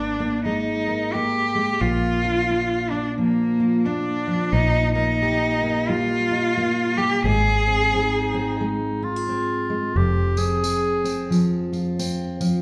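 Nostalgic and hopeful, this acoustic folk passage at 88 BPM in swung 4/4 and Bb mixolydian sets a smooth, bowed cello melody with vibrato over a full-bodied fingerpicked steel-string guitar, finger squeak included, and a punchy, foam-muted fingered electric bass, while a clear, classical-style clarinet adds a second line from 7.9 s and a jingly tambourine enters at 10.4 s, inside a wet recital-hall reverb.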